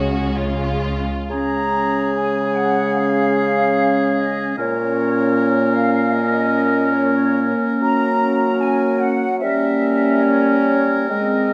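Serene and warm, this slow romantic orchestral passage in Db major moves at about 74 BPM with a flexible, rubato pulse. It opens with a brief bowed string chord: vibrato-rich violins carry the melody and a second line over background violas, even cellos and close, lush double basses. At 1.3 s the winds and horns take over until 11.5 s, with an airy, distant flute ensemble, a clear oboe and a soft-attack, vintage-toned clarinet in the background weaving second lines, an up-front bassoon in accompaniment, and dark French horns sustaining chords that move from Db through Bbm and Gbadd9 to Gdim7, all in a moderate scoring-stage reverb.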